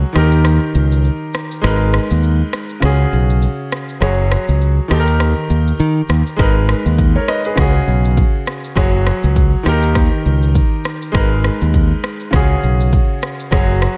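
Afrobeats in G# minor at 101 BPM with a swung sixteenth feel, this short excerpt cut from a longer piece has a smooth, sultry mood, opening on a break that runs to 6.4 seconds. A punchy, bright fingered electric bass sits up front and loudest alongside a clear concert grand piano playing accompaniment, and an electronic afro-pop kit of deep kick, rim click and shaker enters at 0.2 seconds with a tape-tinged produced sound. The chords cycle through D#, G#madd9, C#sus4 and F#sus2 under light reverb.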